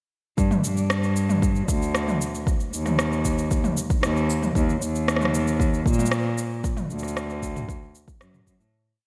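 A delicate, autumnal folktronica groove in G minor at 115 BPM opens at 0.4 seconds. A single bowed cello plays sul tasto, carrying a dub-style bass line between D2 and Bb2 with a rich, pure, floating tone and soft attack. Beside it, a deep, soft electronic kick and a clicking found-sound kit of rim, shaker and low tom sit up front, both overdriven and re-recorded in a large room, under light reverb before a fade-out from 5.9 to 8.7 seconds.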